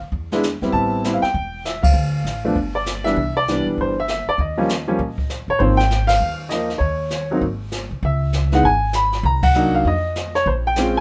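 A baby grand piano carries the melody up front, its open tone and long sustain ringing over a fast 197 BPM swing in 4/4 that turns to Ab major at 5.6 s, with chords moving through Am7, Cmaj7, Ab6 and Bbm9. Underneath, a woody pizzicato upright bass holds the low end, while a jazz brush kit adds dark cymbals, a medium-tuned snare and a boomy kick. The band hits accents together at 1.8 s and 9.4 s, giving this playful excerpt from a longer piece its buoyant lift inside a light reverb.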